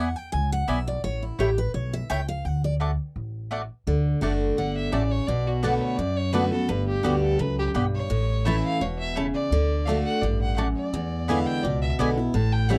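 Driving at 170 BPM in a swung 4/4, this rustic bluegrass cut in D major opens with a bright, full-bodied picked steel-string guitar solo over woody, thumpy upright bass and round, mellow mandolin stabs, all placed up front. At 4.6 seconds a clear, biting bowed fiddle takes the melody from a more distant spot, its light vibrato giving an earthy edge as the chords move through Bm7, G and A back to D and E7. The dry, close sound of a 1970s-style studio carries just a touch of reverb.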